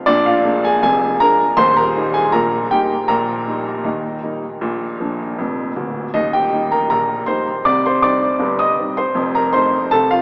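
A smooth, vintage grand piano plays alone and up front from the very start, carrying a lively, jaunty ragtime passage in Eb major at 79 BPM in a straight 2/4, with the piano tuned to A4 = 439 Hz. Its chords move from Bb7 through Eb, Bb and Cm before landing on F7, and the piano's tape echo blends into a dreamy, cathedral-sized reverb and an AM radio tone. This brief 10.2-second excerpt is cut from a longer piece.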